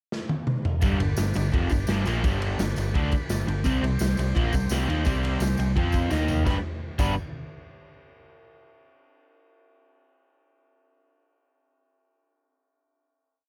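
Rowdy and raw, this short garage rock piece in G major charges along at 170 BPM, with a saturated, punchy drum kit kicking off a pickup bar with a fill before a crunchy, double-tracked overdriven guitar power-chord riff enters at 0.8 seconds alongside a round, hollow-body fingered bass that doubles the riff in driving eighth notes. Behind them, a buzzy vintage combo organ holds overdriven triad chords with heavy vibrato and adds a fill at 3.0 seconds, while a jingly, close tambourine sits in the background. After another drum fill, the band lands on a final G chord at 6.5 seconds, all captured with little reverb and a gritty, up-front stomp.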